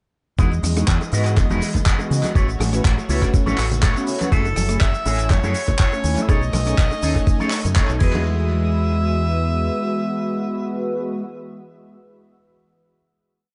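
A thumpy, up-front four-on-the-floor electronic kick drives this sunny, feel-good nu-disco piece at 122 BPM in E major, joined by a dry, tight funk kit with a disco backbeat of claps, rim, shaker, hi-hat and crash, very quiet ringing bongos, maracas and congas, and a round, dark dub bass playing a funky syncopated line under a clean, twangy envelope-filtered guitar riff, mellow detuned synth brass in dotted-rhythm chords with tape echo and sidechain pumping, and a lush, thick unison pad moving through Emaj7, A6, F#m9 and B13, before a bright, close-miked tenor saxophone with vintage 12-bit grit enters at 4.3 s with motif-based call phrases, and the drums stop at 8.1 s and the percussion at 8.2 s as the track lands on a final hit at 8.3 s in an echo-heavy mix.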